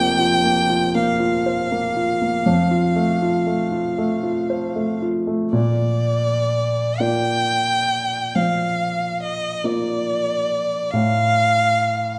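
A bowed violin and a baby grand piano begin together in a serene romantic classical duo. The violin is rich and focused with vibrato, singing the melody between D5 and G5, while the natural-sounding piano accompanies from deep F1 up to D5, both set up front in a moderate recital-hall reverb. In a rubato 12/8 at roughly 38-47 dotted-quarter beats per minute in Bb major, the harmony moves from Fsus4 to F, settles on Bb at 5.5 seconds as a new section opens, and turns to F/A at 10.9 seconds before this warm excerpt from a longer piece breaks off.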